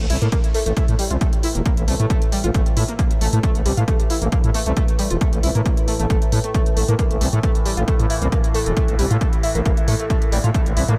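Driving peak-time techno at 135 BPM in A phrygian, relentless and intense, where a punchy, tape-warm electronic kick and a growling, thick FM bass sit up front with the bass pumping to the sidechain, smooth layered hi-hats pump along, a gritty, screaming, guitar-like overdriven synth lead carries the riff through distortion, chorus and delay, and a resonant drone with moving overtones enters at 0.5 seconds in the background, all inside a light reverb on this cut from a longer piece.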